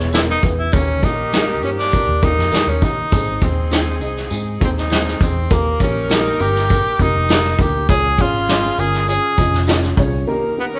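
Recorded live in one room with a moderate large-studio reverb, this short cut of uptempo 1960s-style soul at 101 BPM feels uplifting and danceable, as a breathy, whispered tenor saxophone carries the melody up front over a distant, tight saxophone section, a dark, woody upright piano, a round, foam-muted picked electric bass, faint slightly broken-up guitar stabs through a small old amp, a punchy brush drum kit and a jingly tambourine in the background, moving through Eb, Ab and Db chords before a brief break at 10.3 seconds.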